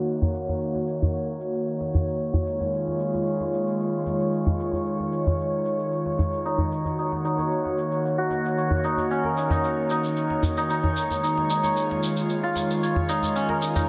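Organic downtempo with a mystical, hypnotic mood, cut from a longer piece and unfolding over a steady, straight pulse. An airy, breathy pad sits up front, holding soft, detuned chords with slow attacks, long releases and chorus, while a drifting glass-harmonics texture glints quietly in the background on a single high note, its calm sine tones bathed in chorus and their own reverb. The hammered santur rings out in bright, shimmering arpeggios close to the listener with tape echo, briefly at the start, then falling away until it returns at 6.5 seconds. A close, dry, medium-tuned djembe played with hard hands carries the groove alongside a quiet, layered electronic shaker that sounds re-recorded in a small room and dulled by low-pass filtering. The harmony rocks between Ebm7 and Dbadd9/Eb, and the whole mix sits in a lush hall reverb while a filter sweep runs throughout.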